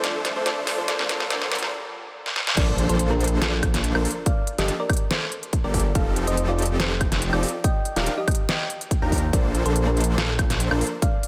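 A half-time future bass groove carries this emotional, lush clip, where a round, tine-like synth pluck sings the melody over huge supersaw chords, with a brief brilliant grand piano and an airy breathy pad in the build-up and a very quiet riser and impact reaching into the drop at 2.6 s, which brings in a thick detuned saw bass and a punchy electronic kick beside the tape-warm dubstep kit with its deep snare, crisp hats, crash and woodblock.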